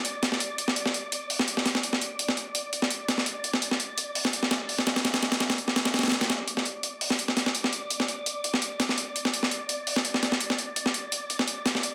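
A gritty, sampler-style breakbeat kit and an airy, wind-like tuned noise layer begin together at 0.0 seconds in this short cut from a longer drum and bass and jungle piece at 168 BPM in a straight 4/4. The mood is raw and nostalgic. The drums sit up front, built from hi-hat and a medium-tuned snare that sound compressed and tape-warm, with filtering thinning the hats and snare and a small room reverb around them. Behind them, the breathy noise texture hovers between D5 and D6, fading in slowly and sustaining with a long, dark release inside its own reverb. A moderate plate reverb, with a 1.4-second decay, spreads over the mix, and the dense, heavily limited master keeps both parts pressed together until they stop at 11.9 seconds.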